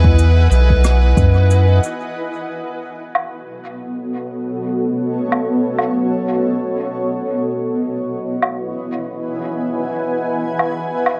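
Ambient dub at 91 BPM in 4/4 with a light swing on the sixteenths, this short excerpt from a longer piece feels peaceful and spacious, centred on B mixolydian. A cloudy, evolving granular pad sits up front for the full 11.2 seconds, holding blurred, slow-blooming chords in its own reverb, moving from Emaj7 to B7 at 2.2 seconds and back to Emaj7 at 7.4 seconds, with a filter sweep running across it from 2.2 seconds on. An overdriven slide guitar touches a single B4 through dub echo in the opening moments, while a round, soft sub bass and a deep, layered electronic kick with overdrive anchor the start before dropping away by 1.8 seconds. From 0.2 seconds a mid-forward blend of cabasa, rim click and woodblock, played with brushes and rolled off at the top, carries on through its own dub echo. The mix is dry of reverb but heavy with echo, leaving the pad and hand percussion to carry the airy stretch that follows.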